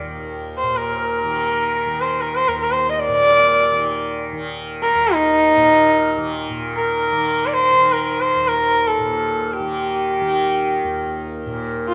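A light reverb gives this short fragment of Hindustani classical music a gentle sense of space. It is in raga yaman on Eb, unfolding in free time with a meditative, serene mood. A softly plucked tanpura sounds its buzzing, shimmering drone in the low register from the opening moment. At 0.6 seconds a single bowed sarangi enters up front, its earthy, rich tone ringing with sympathetic strings as it carries the melody in the middle register. Gliding portamento shapes the sarangi's line, and the passage closes at 11.9 seconds as though drawn from a longer performance.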